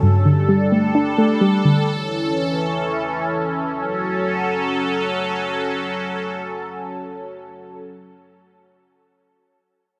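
This menacing, melancholic hip hop excerpt moves with a half-time feel, opening with a soft, round, dark pluck that decays after each note and plays only until 1.9 seconds, while a bright, detuned sawtooth pad with a sub octave and resonant filter swell sustains through to 7.8 seconds. Both synths carry chorus and sit up front, and the harmony shifts from Gsus2 to A and then settles on F#m at 3.7 seconds. Light reverb adds a digital ambience around the sound.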